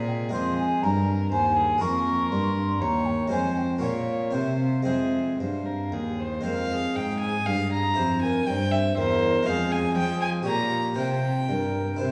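A round, plucked harpsichord sits up front in this grave, flowing baroque-style sonata movement for flute, violin, harpsichord and cello, taken from a longer piece and set in triple metre with a free, rubato feel. Alongside it, a single violin with a gut-string, reedy richness carries the second line close to the listener. The baroque flute sings the melody from a more distant position, its airy, wooden tone shaded with vibrato and expressive tonguing. A lone cello anchors the bass with a nasal, period-style bowed sound that also sits further back. All four play together throughout, with a second section beginning at 6.4 seconds. The ensemble is heard from further back in a recital hall whose wet reverb lends the minor-key harmonies a sombre glow.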